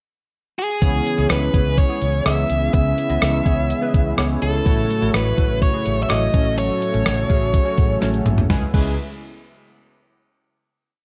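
Dramatic and urgent, this short 1980s-style pop piece in C# minor moves at 125 BPM, as a biting, overdriven lead guitar with digital delay enters at 0.6 seconds with a motif-based melody over glassy digital keys playing syncopated chords, a smooth sawtooth pad, fat analog synth brass swelling in the background, a growly fretless bass driving eighth notes through lush chorus, and a thumpy 12-bit drum machine with a big backbeat, all in a dark production with digital ambience until a drum fill at 8.0 seconds leads to a final C#m7 chord.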